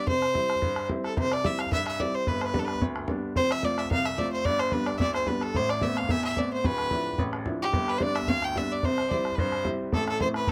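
A clear, bowed fiddle and a bright upright piano start together, with the bodhran joining at 0.1 seconds in this driving, spirited Celtic reel cut from a longer piece. The tempo is a brisk 219 BPM in 4/4, in C major, with a light swing on the eighth notes. The single fiddle carries the melody between G4 and G5, sitting up front with an earthy tone, a smooth top end and a light vibrato. Beneath it, the upright piano supplies a brilliant, woody accompaniment reaching down to D1, moving through C, G, F, G, Amadd9, Dmadd9 and G before returning to C and landing on Am at 9.9 seconds. The bodhran keeps a damped, tight acoustic pulse with a small-room character. Close, detailed microphones and a light reverb give the recording an intimate, immediate feel.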